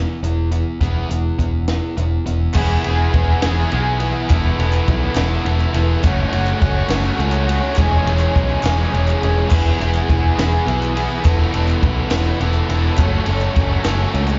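Indie rock in a straight 6/8 at 69 BPM in E major, upbeat and jangly, heard as a live club gig through the venue's PA with small-room reverb and a muffled top end. A bright, compressed fuzz guitar riff with slapback echo opens over round, up-front picked bass and a dry cocktail kit with dark cymbals, a high-tuned snare and a tight kick. At 2.5 seconds a raw, overdriven garage guitar with analog chorus and slapback echo joins alongside crisp, faint group handclaps, and from 2.6 seconds a soft, flute-like tonewheel organ adds very quiet sustained chords through a rotary speaker as the harmony moves through Eadd9, Asus2/E, F#m and C#m/E.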